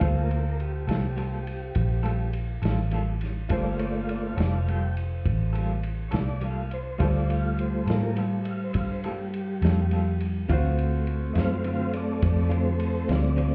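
Soulful and mournful, this slow blues in G minor moves at 69 BPM in a straight 12/8 feel, a 13.5-second section cut from a longer piece. A tonewheel organ takes the solo throughout, its clear, clean tone carrying key click, chorus vibrato and a slow rotary speaker. Beneath it, a foam-muted vintage fingered electric bass sits up front with a dark, round, punchy sound, while a vintage drum kit of kick, snare and ride gives a lo-fi, muffled small-room feel with a rolled-off top. An electric guitar at the edge of break-up adds picked, compressed, slightly broken-up accompaniment with tremolo, and a bright baby grand piano contributes brilliant, natural support further back in the mix. The harmony rests on Gm9 before shifting to D7#9 at 10.5 seconds, and the whole band sounds as if heard through a wall in a club, with little reverb.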